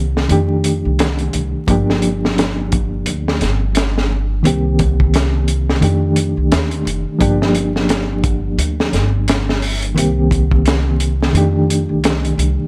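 Smoky and hypnotic, this trip hop excerpt sits at 87 BPM in G minor, its 16th notes swung to a lazy 59% lilt. A reedy electric piano carries the accompaniment with a fast tremolo, tape echo and the grit of a vintage 12-bit sampler, cycling through Gm7, Cm7 and F13 across the passage. Underneath, a pizzicato upright bass with steel strings gives a woody low end from the very start. At 0.2 seconds a crunchy breakbeat kit enters up front, dark and saturated with a rolled-off top, pairing a punchy kick with a high-tuned snare and hi-hat. The whole excerpt is bathed in small room ambience and a layer of vinyl crackle, giving it a dusty, late-night atmosphere.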